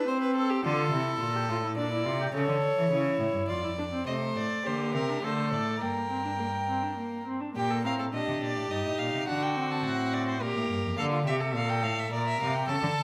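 A baroque-style fugue for string quartet in a solemn, driving 3/4 at 105 BPM, played by four bowed gut-string instruments in period style: a second violin with light vibrato carries its line from the start, a dark, smooth-topped viola accompanies until 11.0 s, and a rich, close cello anchors the bass, while a nasal, airy-bowed lead violin sits up front with the melody from 4.1 s, where the music turns from D minor to G minor, all set in a reverberant recital hall in this passage cut from a longer piece.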